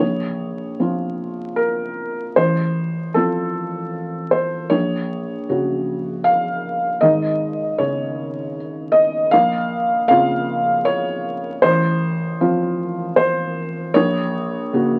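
Reflective and melancholic, this neoclassical minimalist piano excerpt in Bb minor moves at 77 BPM in a rubato 3/4, its felt-muted upright piano playing alone throughout, soft, mellow and intimate, sitting up front across a span from Ab1 to F5. The harmony cycles through Bbmadd9, F/A, Gb/Bb and Absus4 before returning to Bbmadd9 at 9.3 seconds, heard in a moderate studio ambience. The recording carries the character of a very old 78 rpm record, with vinyl crackle beneath the playing.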